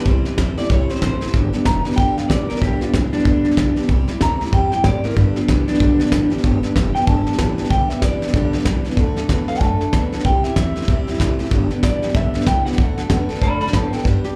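Rowdy and retro, this swung rockabilly excerpt, caught live through a club PA, sets a bright, twangy lead electric guitar with analog delay over a picked, full-bodied steel-string acoustic guitar, a background riff guitar whose slightly broken-up tone carries a warbly pitch drift, a woody, thumpy pizzicato upright bass and an up-front soft brush kit with a fat snare, moving from C through G, D and back across its 14-second span.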